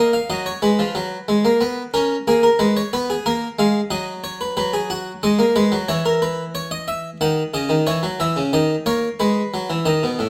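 A straight 4/4 pulse at 91 BPM carries this short, baroque-style two-part invention in B major, cut from a longer piece. The mood is stately yet lively, with a single harpsichord playing solo from the start to about 10.3 seconds, ranging from A2 up to F#5. Its plucked, brilliant tone is thickened by octave strings, and the instrument sits up front in the sound. The harmony moves through F#, G#m and C#, returns to F#, then passes through B over F# and C#m over E before reaching B over D# near 8.5 seconds. A moderate stone-room reverb gives the notes a clear, resonant halo.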